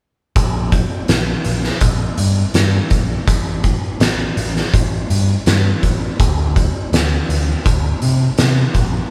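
A straight, brooding 4/4 groove at 82 BPM drives this gritty blues rock power trio and southern rock fragment, cut from a longer piece, with the drums and bass both entering at 0.4 seconds. The oversized, low-tuned acoustic kit sits up front with a punchy kick, fat snare and hi-hat, its saturated sound caught in a bright stone room that pumps. The overdriven picked electric bass growls through an amp from A1 to C3, while light reverb frames the band playing live together in one room.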